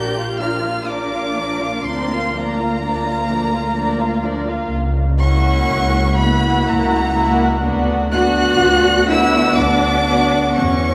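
A slow, rubato 3/4 at 62 BPM carries this yearning, solemn romantic movement for string orchestra, cut from a longer piece and settling into B minor from 4.7 s over a Bb, Bb/D, F#7/C# and Bm/D progression. A chamber violin section sings the high melody up front with vibrato and a soft, sul tasto touch, while a second, darker violin section with a woody, smooth-topped sound takes the second line, and an intimate viola section fills the accompaniment. Beneath them a dark cello section and a close double bass section with light vibrato hold the bass, all bowed within the long, wet bloom of a church reverb.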